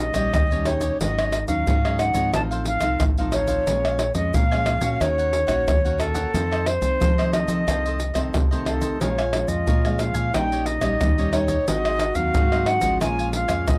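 Lively yet yearning, this fragment of a longer samba and choro piece moves at 90 BPM in a straight 4/4 in Bb minor. An airy silver concert flute carries the melody with a straight tone and crisp attack, while a fingerpicked nylon-string guitar with fresh strings and audible finger squeak supplies classical-style accompaniment beneath it. A bright, picked cavaquinho sits in the background, and a dark, round fingered electric bass anchors the low end. Up front, a compressed, saturated percussion bed of egg shaker, tight surdo, pandeiro and tamborim, played with soft hands, drives the groove from 0.1 seconds. At 9.0 seconds a punchy, forceful trombone enters as a second line with scooped, jazz-style notes, all within a dry, close studio sound in a 1970s style.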